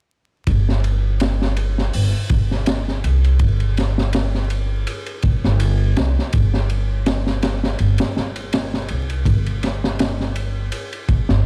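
A dark, hypnotic trip hop groove rolls along in 4/4 with a lazy sixteenth-note swing, taken from a longer piece. A crunchy breakbeat drum kit sits up front, its hi-hat, tight kick, ride cymbal and high-tuned snare sounding saturated and gritty, with a rolled-off top that keeps the kit smooth and shadowy. An upright bass, plucked pizzicato on steel strings, holds the low end between G1 and C2 with a woody tone, also placed close and forward. Both parts enter together at 0.5 seconds; the drums drop out at 11.4 seconds, while the bass carries on to the end of the section at 11.5 seconds. The production is dry and warm, with very little reverb and a bed of vinyl crackle that adds to the murky, late-night atmosphere.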